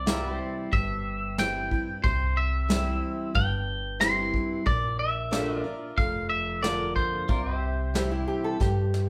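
A straight 4/4 groove at 92 BPM rides on a soft brush drum kit with a punchy kick, a thumpy, woody upright bass and a full-bodied picked steel-string acoustic guitar, giving this sunny, easygoing honky-tonk and classic country cut in C mixolydian (tuned to A4 = 439 Hz) its relaxed lift as the chords move from C to Bb and back. A bright, clean, twangy electric guitar carries the melody up front, while a slightly detuned upright piano sits in the background and a compressed pedal steel guitar holds sustained chords. A nasal, metallic lap resonator guitar slides in with a second line at 8.0 seconds, just before a drum fill at 8.6 seconds, all set in a moderate large-studio reverb with the feel of a band playing live in one room.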